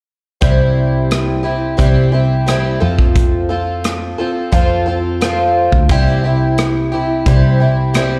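A hopeful, jangly folk rock and heartland rock excerpt, heard live through a club's PA with a small-room ambience, where a picked twelve-string acoustic guitar sits up front with a shimmering, octave-doubled sound, touched by subtle chorus and slapback echo. A dark, round hollow-body electric bass and a natural country drum kit with a punchy kick, hi-hat and rim click play alongside it from 0.4 seconds. The harmony moves from C to F at 2.8 seconds and back to C at 5.9 seconds before the clip ends.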